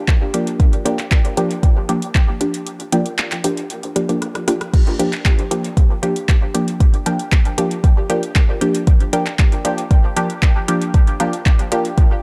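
Dark, cavernous dub techno with light reverb and a digital ambience: this nocturnal excerpt moves at 116 BPM in a straight 4/4 in G minor, resting on a Gm7 chord. A deep, tape-warm electronic kick sits up front under a layered deep house kit of metallic hi-hats, handclaps, rim clicks and crash cymbal touched with dub echo. A muted sawtooth chord stab with a filter pluck, phaser, chorus and sidechain pumping carries the stabs, while a higher, detuned riff stab with lush chorus and dub echo drifts in the background; a filter sweep opens the passage, followed by a break at 2.7 seconds and a drum fill from 4.0 seconds into a full-band accent.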